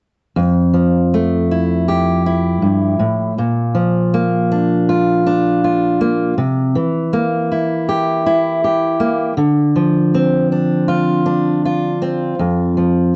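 Folk music at 80 BPM in 4/4 with a straight, hopeful feel, this short excerpt features a fingerpicked steel-string acoustic guitar playing solo from 0.4 to 13.2 seconds, ranging from F2 to G4 in F major. The guitar sits up front with a dark, auditorium-like tone, moving through Fmaj7, Bb, C7 and Dm7 before the chords stop at 12.4 seconds. Light reverb surrounds it, and the sound is soft at the top, with nothing above 7.9 kHz.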